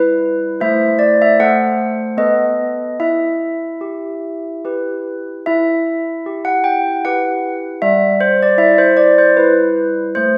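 Solemn and wintry, this short classical tune for handbells moves at a stately 76 BPM in a straight three-beat metre, settled in E minor. The handbells carry everything alone from start to finish, spanning G3 to G5 with a clear, ringing tone softened by gentle clappers, and they sit up front in the sound. The harmony opens on Em/G and passes through Am, F#dim/A and B7 before resting on E minor at 3.0 seconds, then returns to Em/G near the close. A second phase of the tune begins at 5.5 seconds, giving the brief passage a two-part shape. A generous recital-hall reverb blooms around each stroke, and the bells themselves have an airy, mellow glow, captured in a church or concert hall. The clip is cut from a longer piece and lasts just over ten seconds.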